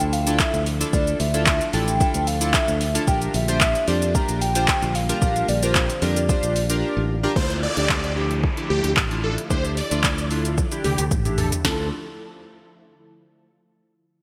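A bright, 1980s-style digital production sits in a lush hall reverb in this bittersweet yet confident dance-pop excerpt, moving at 112 BPM in straight 4/4 in D minor. An up-front, overdriven R&B drum kit with gated reverb drives it, with a soft kick, sharp snare, warm hats, handclaps, shaker and toms. A dark, round fingered electric bass pumps against the kick, while glossy, full-bodied retro synth keys pump and play through a low-pass filter, and a very quiet, swirling string machine holds phased chords underneath. A hollow, woody clarinet-like synth lead with vibrato, chorus and delay carries the melody until 7.1 seconds, and after a brief silent gap, huge detuned supersaw chords take over the melody at 7.4 seconds, phased and filtered as a filter sweep and a background downlifter unfold. The harmony moves from Dmadd9 to Bb6 at 3.1 seconds and returns to Dmadd9 at 7.4 seconds, and a drum fill arrives at 10.6 seconds.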